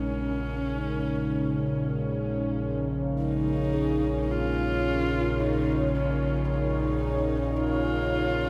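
Unsettling and cavernous, this short dark ambient drone in Bb minor floats in free time, set in a huge, wet reverberant space with an 8.3-second decay. Up front, a nasal, pulse-width-modulated analog drone holds the low register. A deep, detuned sawtooth pad sustains chords with chorus, and a husky, airy-bowed horsehead fiddle carries an intimate melody with light vibrato, portamento and delay, while a metallic bronze singing bowl, struck with a suede striker, rings out slow-beating arpeggios through its own delay in the background.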